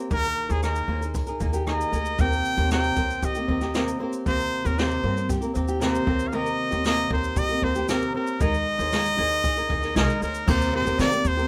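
Acoustic pop at 116 BPM in Eb major, easy-going and sunny, with a brilliant, punchy trumpet carrying the melody up front over a fingerpicked flamenco guitar, a full-bodied jumbo steel-string guitar arpeggiating in the background until 10.3 seconds, a woody pizzicato upright bass, and a brushed drum kit with dark cymbals and a boomy kick, all in moderate studio reverb as the chords move between Absus2/Eb and Eb6 in this cut from a longer piece.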